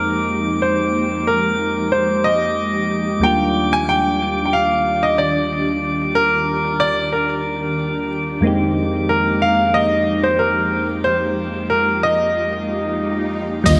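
Bright 1980s-style digital production bathed in a lush hall reverb frames this sunny sunset chillout excerpt. A clear, polished concert grand piano sits up front with the melody and a touch of delay, over mellow, chorused electric-piano-like synth keys, an ethereal, warbling pad with vintage 12-bit sampler grit, and a faint, calm texture of glassy drifting overtones, all moving between Fm11 and Ebmaj7. An electronic swell and downlifter enter at 12.7 s, and at 13.7 s a dark, round fretless electric bass arrives with a thumpy, compressed electronic kick in the background and low-pass-filtered electronic hi-hat and cabasa just as the clip ends.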